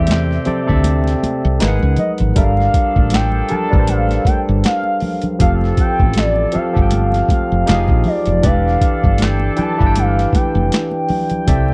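Lightly swung sixteenths in 4/4 drive this relaxed, smooth neo-soul groove from a longer R&B piece: a gritty, pitched-down boom bap drum kit with handclaps, hi-hat, a high-tuned snare and a thumpy kick (muted from 0.8 to 2.4 seconds) sits up front beside a round, woody fretless bass coated in lush chorus, while soft-handed congas add color in the background. A bright, barky tine electric piano, lightly overdriven through a combo amp, comps through chords such as Abm9, Gm9, Fmaj7 and Em7, and a vintage jazz-style horn section adds clear, loose stabs from behind. On top, a gliding portamento lead with a soft attack, vibrato and chorus carries the sustained, detuned melody, all captured in a dry, close 1970s-style studio sound.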